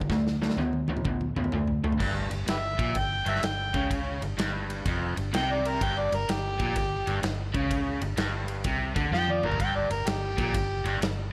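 Blues rock with a southern rock edge, this driving, gritty excerpt swings at 126 BPM as a crunchy, double-tracked overdriven guitar riff and a big, dark-toned acoustic drum kit with a punchy kick open together, the drums rolling through a fill over a D5 chord before the guitar and drums carry on. A round, foam-muted fingered electric bass sits beneath them from 0.1 seconds. At 2.5 seconds an amplified, overdriven harmonica steps up front for a jazz-style solo full of tongue slaps, scooped notes and light vibrato, while another drum fill lands at 9.1 seconds, all in a studio room with light reverb.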